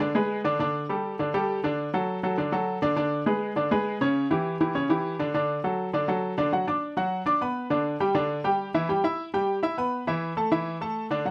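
A solo baby grand piano opens this short, joyful Latin fragment in D major, cut from a longer piece, moving at a brisk 203 BPM in a straight 4/4 that feels ready for dancing. The instrument sounds bright and brilliant yet a little worn, with a short sustain and audible action noise that place it up front and intimate. Spanning C#3 to E6, the piano works through a harmonic passage that starts on G#dim/D and moves through A7sus4, D, Bm69 and C#dim. At 6.5 seconds a second section begins, shifting to Bm, G5, Em/G and finally A5 before the fragment breaks off at 11.3 seconds. Close, detailed microphones and a moderate studio reverb keep the sound present and clear.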